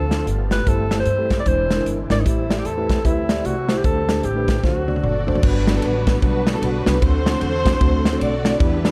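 A smooth-topped alto saxophone with vibrato carries the melody up front in this uplifting, reverent uptempo gospel excerpt at 151 BPM in G major, swung in 4/4 over a mellow tine electric piano, a woody pizzicato upright bass and a punchy, polished country drum kit. A reedy, lightly overdriven tonewheel organ with slow rotary speaker and key click sits in the background, while a tight French horn section holds very quiet chords until about 5.4 seconds. During a drum fill that begins at 4.6 seconds, a lush bowed string section takes up the melody from 5.0 seconds over chords such as Gmaj7 and D7, all within a dark production with light studio reverb.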